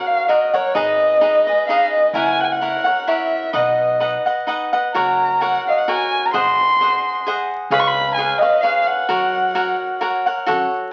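A lilting 3/4 sway at 130 BPM with swung eighths drives this festive, romantic mariachi excerpt in F# major, tuned slightly below standard pitch. A single up-front violin carries the melody, bowed sul tasto with vibrato for a dusky, woody voice, over a crisp, bright, picked cavaquinho. From 0.8 s a thumpy, gut-strung pizzicato upright bass sits far back, all set in a small, reverberant room and heard through the crackle of a very old 78 rpm record.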